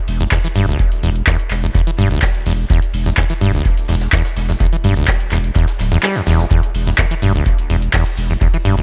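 A thick, saturated sine sub bass pumps against the sidechain from the opening, joined by an electro drum machine's metallic hats and handclaps trailing analog delay, and a high-passed rock kit's hi-hat, shaker and medium-tuned snare sitting in the background. A squelchy, resonant sawtooth acid riff with filter sweeps, chorus, tube saturation and dub echo arrives up front at 0.2 seconds, and a deep analog kick enters at 0.3 seconds. This hypnotic, gritty acid house excerpt sits in a small, echo-heavy room, and the kick drops out briefly at 6.0 seconds.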